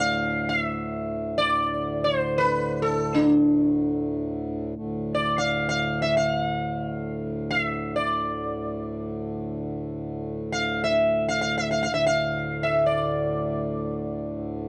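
A reedy, dark pedal harmonium drone and a buzzing, shimmering sitar sound together from the start of this meditative, introspective Hindustani classical excerpt in free time, where the up-front sitar explores raga Bhimpalasi in D above the low drone, all captured in a close, dry 1970s-style studio sound with light reverb.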